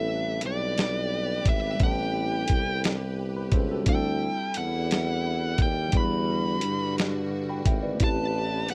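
A slow, sultry six-eight R&B groove rolls from a dusty, gritty, sampler-style drum kit that enters at 0.4 seconds with a thumpy kick, medium-tuned snare and hi-hat, while a breathy, vintage tuba carries the bass line up front with a mellow vibrato. Over the Am9, D9sus4 and Em9 changes, a compressed fuzz guitar picks a yearning melody, a worn, slightly out-of-tune tine electric piano with phaser sits in the background, and a lush bowed string section holds smooth sustained chords. The sound is dry and close, and the piece is cut from a longer work.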